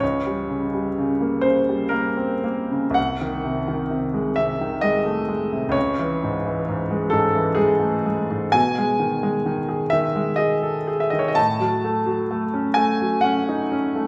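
A clear, intimate grand piano opens alone with a natural, up-front sound and audible action noise, playing a melancholic, wistful romantic nocturne in 3/4 at 63 BPM with uneven, rubato beats, its harmony drifting from A#m69/C# through G#7/B#, C#m and G#m/B to F#m/A, set in a wet recital hall reverb in this 14.1-second excerpt cut from a longer piece.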